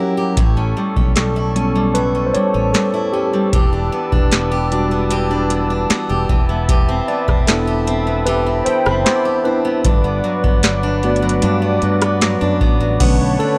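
A dry, gritty hardware recording with transformer saturation frames this longing, moody contemporary R&B excerpt, where a booming analog drum machine with a deep kick, tonal snare, metallic hats and rim clicks sits up front beside a round, dark fretless bass. A mellow tine electric piano takes a solo from 0.4 seconds, supported by picked steel-string acoustic guitar arpeggios and a smooth, warbling analog pad holding sustained chords with chorus, as the harmony moves from A7 through Em7, Cmaj7/E and Gmaj7 to Bm9. At 7.1 seconds a glassy, crystalline wavetable pluck enters in the background, colored by chorus and analog delay.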